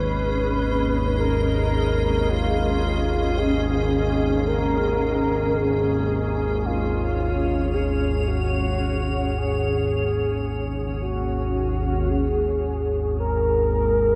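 Dark and cavernous, this dark ambient drone drifts in free time, cut from a longer piece and steeped in a huge, wet reverb with a long tail. Underneath, an up-front analog drone in the low register sustains, its detuned sawtooth and pulse-wave tones warbling and evolving with a vintage, chorused warmth. Above it, a mellow, horn-like synth lead carries the melody with a round, soft-attacked tone, colored by vibrato, a filter sweep, chorus, phaser and tape echo. A bright, full-bodied granular cloud pad sustains blurred chords over the opening G#5 harmony, then falls away at 12.1 seconds, leaving the closing passage to the lead, the drone and a very quiet, breathy wind-like noise texture that hovers airily in the middle range.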